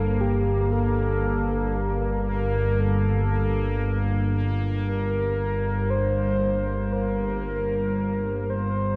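A dark, up-front analog drone of detuned sawtooth and pulse waves with ring modulation opens this desolate, cavernous dark ambient fragment in free time, sounding from the start alongside a round, horn-like synth lead that carries a mellow melody with vibrato and diffuse delay, and a bright, resonant bubbling texture of random filter steps that fades out, the whole set inside a huge reverberant space.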